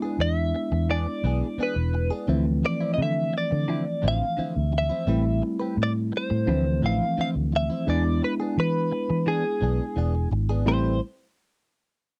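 A dark, round, foam-muted fingered electric bass sits up front in this smoky, soulful blues excerpt in A minor at 86 BPM, alongside a bright, compressed clean guitar melody with analog chorus, a second direct-recorded guitar playing phaser-tinged stabs, and a tine electric piano comping through a combo amp over E7, Dm9 and Am9 chords, all captured in a dry, close 1970s-style studio sound.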